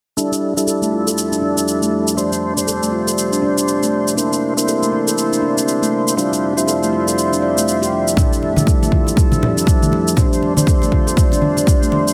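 Spiritual and warm, this afro house excerpt sets ringing handpan arpeggios and clear, lightly overdriven tonewheel organ stabs with key click and slow rotary, both under filter sweeps and tape echo, over a deep, detuned analog pad of sustained chords, the three of them pumping around Fmaj9, F69 and C7 alongside an overdriven shaker, until a punchy, up-front electronic kick drum and acoustic congas join at 8.2 seconds in a small, lightly reverberant room.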